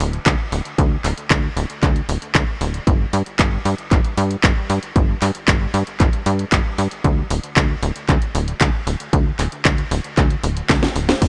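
An italo disco excerpt at 115 BPM in straight 4/4, danceable and melodramatic, opens with a tight sequencer bass and a house drum kit sounding together from the very start. The bass runs from D1 to G2 with a nasal, sawtooth-and-square-wave tone, its filter pluck giving each note a fast attack and a decaying tail, while an analog delay trails behind it as the sound evolves. An electronic kick drum joins at 0.3 seconds, punchy and layered, sitting up front and carrying a tape-warm character from being re-recorded in a small room. The house kit supplies a cracking snare, handclaps, hi-hat and crash cymbal, sharing that small-room, produced sound and also placed up front. The whole passage stays in a single section under light reverb, and a drum fill from 10.7 to 11.2 seconds closes it out.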